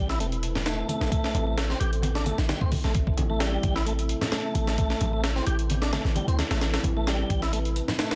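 Dense, heavily limited and dusted with vinyl crackle in a light reverb, this raw, energetic breakbeat fragment puts a gritty, compressed sampler-style drum kit with a thumpy kick and high-tuned snare up front beside a deep, boomy 808-style bass, while a lightly overdriven tonewheel organ with key click, fast rotary speaker and digital delay plays a riff over a dark, detuned ambient pad that pumps under sidechain, and bright vintage congas sit in the background from 0.6 seconds.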